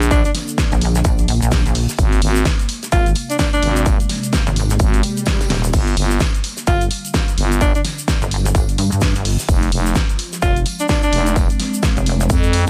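A growling FM bass, a sweeping, detuned sawtooth pad, a big-room kit with a huge snare and a grainy tube shaker open this swaggering, gritty bass house excerpt at 128 BPM in G phrygian. They are joined at once by a punchy up-front electronic kick and a dry, damped 70s kit with tambourine in the background. A heavy pulsing pluck wobble bass enters at 0.7 s under a bright, vibrato-laden alto saxophone solo with dub echo. A background swell arrives at 5.1 s and a drum fill at 5.5 s, over chords moving from Bbadd9 through Abadd9 and Gm to Fm.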